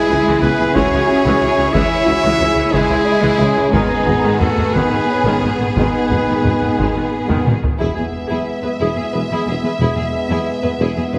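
A heavily compressed, radio-like mix sits in a wet scoring-stage reverb, giving this heroic, adventurous cinematic excerpt in a straight 6/8 an epic orchestral sweep. Lush bowed violins carry the vibrato-rich melody over a smooth second violin line, with distant violas, expressive cellos, rich double basses and a roomy tuba anchoring the low end, while mellow French horns and very quiet trombones hold sustained chords beneath an up-front clear trumpet's stabs. A taiko ensemble plays with heavy sticks and drives a fill into the 7.8 s shift from minor chords to a bright E major, by which point the trumpet and trombones have dropped out.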